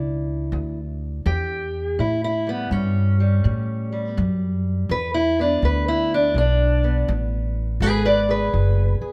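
A loping 82 BPM swing in 4/4 carries this soulful, gritty acoustic country blues fragment, cut from a longer piece, as a fingerpicked steel-string parlour guitar takes the melody across a range of E2 to D5 with a dark, boxy tone, moving from E7 to A7 at 2.0 seconds and back to E7 at 4.9 seconds. Beneath it a pizzicato upright bass plays a woody low line, both instruments sitting up front. Close, detailed microphones and light reverb give the 9.1-second duo an intimate, present sound.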